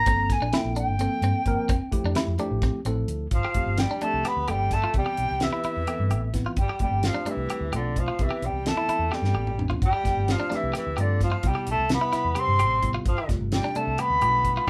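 Heard as a band playing live in one room with moderate studio reverb, this bright, funky electric jazz fusion excerpt runs at 259 BPM in 7/8 with a straight feel in F major. An airy, expressive concert flute with vibrato carries the melody up front and takes a solo through the first 3.3 seconds. Beneath it, a mellow, worn, slightly out-of-tune tine electric piano accompanies, a clean, compressed electric guitar adds picked stabs, a round, dark hollow-body bass holds the low end, and a dry, damped 70s drum kit with a fat snare and tight kick sits forward, playing a fill at 9.1 seconds; from 3.3 seconds a distant, roomy tenor saxophone adds a jazz-style second line as the chords move between G9sus4 and Cmaj7.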